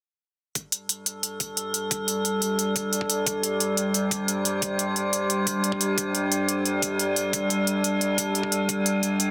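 A dense, heavily limited modern master sits in a lush hall reverb, giving this dark technical drum and bass excerpt a futuristic, aggressive air at 177 BPM in straight 4/4. Crisp, layered electronic hi-hats, re-recorded in a small room and placed up front, start at 0.6 seconds alongside a knocking, tape-warm electronic kick, which sits lower in the mix behind a high-pass filter. From 1.0 seconds an eerie metallic drone of inharmonic FM tones holds sustained chords over a G5 harmony, up front, with a slow attack and long release shaped by chorus, built-in reverb and sidechain pumping. At 2.0 seconds a deep, moody pad joins at a lower level, blending detuned sawtooth unison with a sine sub octave, mellow in character and treated with its own chorus, reverb and pumping. Drone, pad and hi-hats carry through to the close of the passage.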